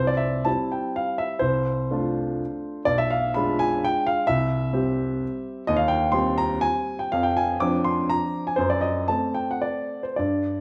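A warm baby grand piano, natural and up front, plays alone through this capricious, nostalgic romantic triple-time dance with dotted rhythms and free rubato, its chords drifting from C major through darkening minor and diminished colours in a moderate recital hall reverb, cut from a longer piece.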